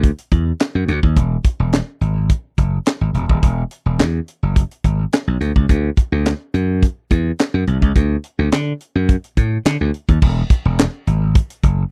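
A bright, growly slap bass sits up front in this smooth, feel-good early-eighties boogie funk, its punchy electric tone reaching deep into the low register in a straight 4/4 groove. A tight acoustic funk kit plays alongside it with a high-tuned snare, a compact kick, hi-hat, handclaps and crash cymbal, heard naturally in a small room, before the music moves into a new section at 10.2 seconds. The dry, close studio sound keeps both parts immediate throughout this short cut from a longer piece.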